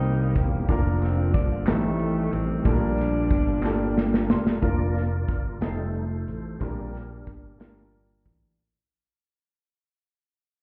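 A growly, up-front fingered electric bass anchors this slow, soulful gospel excerpt in a straight 6/8, with a hopeful glow over its unhurried chords. A polished acoustic drum kit, with punchy kick, medium-tuned snare, hi-hat and ride in an airy studio room, joins in from the start alongside a clear, woody upright piano with long sustain. A tight, mellow saxophone section carries the vintage pop-style melody with vibrato until 4.3 seconds, while hollow group handclaps sit in the background from 1.7 seconds. The drums and piano both play fills leading into the second half, where a fat, lightly overdriven tonewheel organ, heard through a slow rotary speaker with chorus vibrato, key click and percussive attack, takes a solo from 4.6 seconds as the music fades out. The whole mix sounds muffled, as if heard through a wall, with a club-like ambience.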